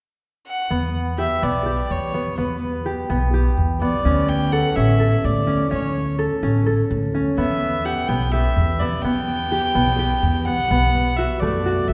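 In a straight 7/8 pulse, this pensive yet urgent contemporary instrumental excerpt opens with a reedy, gut-string period-style solo violin carrying the melody from 0.5 s, joined at 0.7 s by ringing fingerpicked concert harp arpeggios and a woody pizzicato upright bass. The violin sits close, and all three parts are up front within a wet concert-hall reverb heard from further back in the room, as the chords move from Em7 through D5 and Em to Bm7.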